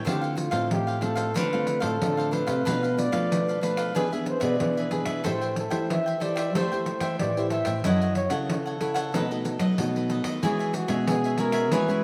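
Sunny and playful, this samba and choro excerpt moves at 93 BPM in a straight 4/4, cut from a longer piece. A breathy flugelhorn carries the melody from 0.1 s, its mellow, whispered tone close-miked and intimate, with vibrato, a soft attack, a jazz style and a slapback echo. Underneath, a bright, crisp picked cavaquinho and a warm, thumb-plucked classical nylon-string guitar share the accompaniment, while a second, darker nylon-string guitar, also thumb-plucked, holds down the bass. A jingly, band-limited pandeiro with a vintage character keeps the percussion going throughout. The harmony travels from Dm7 through Bm7b5, E7, Am7, F#m7 and B7 before settling on E69 at 10.4 s, all set in a lush hall reverb within a rough home demo mix.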